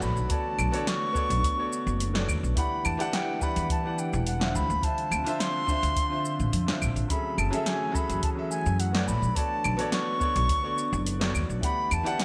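A straight four-beat groove carries this relaxed sunset chillout excerpt, built on a deep, tape-warm electronic kick that enters at 0.3 seconds and a layered deep house kit of claves, hi-hat, shaker and a punchy, overdriven snare treated with gated reverb. Underneath, a woody, thumpy pizzicato upright bass with gut strings sits up front, its tone thickened by tube saturation. A clear concert grand piano with a smooth, vintage character supplies the accompaniment, while an ethereal, detuned sawtooth pad with slow attack and long release hovers in the background, shimmering with ensemble chorus. Above it all, a bright, reedy baroque flute with a pure straight tone and crisp attack sings the melody, trailed by delay. The harmony drifts through lush ninth chords from Bm9 to Em9, Dm9 and F#m9, and a moderate plate reverb and glossy 1980s-style digital production give the whole a polished sheen.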